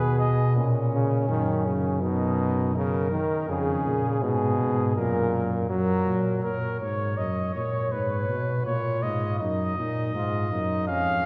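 A soft-attacked trumpet leads this joyful, elegant classical canzona for brass ensemble, heard only briefly at the start before returning up front with the melody at 6.4 seconds. A dark trumpet with light vibrato and a smooth top carries the second line throughout, over a warm, close-miked bass trombone. A clear, close-miked trombone adds accompaniment from 0.9 seconds until 6.4 seconds, and the whole short fragment, cut from a longer piece, sits in a wet church reverb heard from further back in the room.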